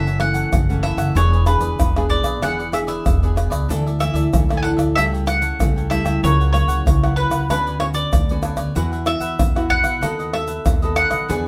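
Samba and choro at a sunny, playful 95 BPM in a straight 4/4, this short fragment is cut from a longer piece and runs as a single section. A bowl-back mandolin carries the melody up front, its picked double strings ringing with a warm tone. Beneath it, a crisp picked cavaquinho and a fingerpicked classical nylon-string guitar on old, woody strings supply the accompaniment, while a pizzicato upright bass on steel strings adds a growly low end. The percussion of egg shaker, pandeiro, tamborim and deep surdo enters at 0.1 s, sitting close, dry and up front with soft hands. The harmony moves from F#m7 through E7, Dsus2 and A7/C# to F#7/C#, Bmadd9/D and Esus2, landing on B7/D# at 10.0 s. The band plays live together in one room, with a wet studio reverb around the ensemble.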